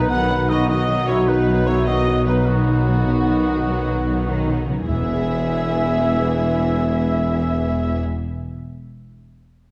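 A dark, full orchestral sound fills a reverberant scoring stage in this cinematic excerpt, adventurous and soaring at 101 BPM in a straight 12/8 in E major. A focused violin section carries the melody with lush vibrato. A mellow, distant oboe and a softer violin section in the background share a second line. A very quiet viola section supplies smooth accompaniment, and mellow French horns hold sustained chords from 0.1 seconds. A dark, roomy trumpet section punctuates with stabs. Below them, a bright bowed double bass section, a mellow tuba and a close cello section anchor the bass. The harmony moves from B to E at 4.9 seconds, where very quiet timpani enter and continue to 8.7 seconds.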